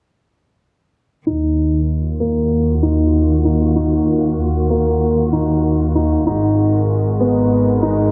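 An up-front upright piano carries this brief electronica fragment, repeating a riff with a dark, woody, boxy tone, long sustain and audible action noise, its notes trailed by tape echo. Beneath it, a bowed double bass section sits equally close, its reedy, gut-string sound shaded by light vibrato in a period style. A string section holds sustained chords a little more quietly, played sul tasto with soft attacks and a smooth top that keeps the texture hushed and close. All three parts enter together at 1.3 seconds and play through to 8.1 seconds in a steady, straight 4/4, with the harmony shifting to a new minor chord at 6.3 seconds. A filter sweep runs across the whole passage, and a moderate echo-chamber reverb with small-room ambience wraps the music in an intimate, melancholic haze.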